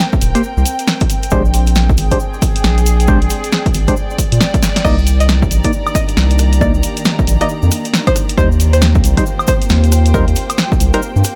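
Skippy and bouncy, this excerpt from a longer two-step UK garage track moves at 136 BPM in C minor, with a 16th-note swing that gives the groove its lilt. A thick, saturated sub bass sits up front alongside a layered, tape-warm electronic kick and a dry, punchy analog drum machine supplying crash, hi-hat, rim click, snare and woodblock, with a drum fill at 4.6 seconds. A grainy cabasa ticks in the background, while a dark, intimate chamber string section bowed sul tasto provides a sidechain-pumped texture underneath. Hollow, organ-like stabs treated with chorus, phaser and delay outline chords moving from a rootless Abmaj9 through Bb13 to Cm9 and Eb6. At 4.8 seconds a twangy, string-like resonator pluck enters with a melody colored by chorus and digital delay, and from 5.6 seconds a silky, vintage string machine adds soft, pumping sustained chords behind it, all in a close, nearly reverb-free mix.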